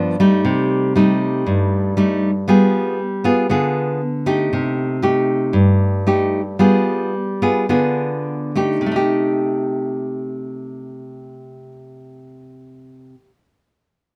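In a straight 4/4 bossa nova pulse, a lone nylon-string guitar plays from 0.0 to 13.3 s, fingerpicked in a classical manner with a melancholic, intimate mood. The harmony alternates between Cm6 and G7b9, and the tempo slows from 4.5 to 8.8 s before a new section begins at 8.8 s, returning to Cm6. The guitar spans G2 to Ab4, and its fresh strings give a full-bodied, up-front tone with audible finger squeak. Close, detailed microphones and a nearly dry room keep every note intimate and exposed. The passage is cut from a longer piece.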